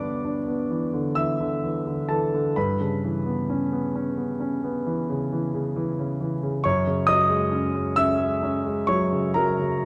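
Flowing in a slow, rubato 9/8, the pulse drifts between 41 and 46 beats per minute on the dotted quarter, giving this impressionist classical solo piano passage a dreamy, hazy character. A concert grand carries everything alone across the full 9.8 seconds, spanning F#2 to E6. Its tone is clear and natural, with a deep bass and a long sustain that lets each harmony linger. The harmony moves from G6 to Em6/G at 2.6 seconds, then settles onto F#add9 at 6.6 seconds. The piano sits up front in a moderate concert hall reverb of about 2.0 seconds, and the clip is cut from a longer piece.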